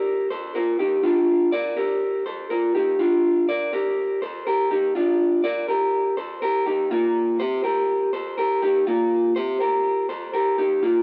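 A lone picked electric guitar sits up front, its dark, slightly broken-up, lo-fi tone coming through a small old amp as it moves from Bb to Gm to Eb across this brief indie pop passage, cut from a longer piece. Despite the shadowy timbre, the straight 4/4 feel comes across bright and breezy. A lush hall reverb with a 2.5-second tail surrounds the guitar, and the rough home-demo mix keeps the sound unpolished.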